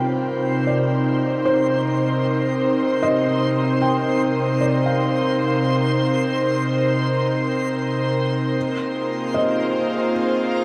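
An airy, breathy pad sits up front from the start of this weightless, luminous ambient excerpt in 3/4, holding sustained chords with a gentle chorus while a felt-muted upright piano plays mellow, intimate arpeggios in the background, its action noise audible through a diffuse ambient delay. Alongside them, a reversed, detuned swelling texture with a granular, dreamy character carries its own reverb, and a long shimmering reverb bathes the space in a luminous glow. The backwards texture fades out across the passage as the harmony moves from Cm7 to Bb7sus4 at 8.6 seconds.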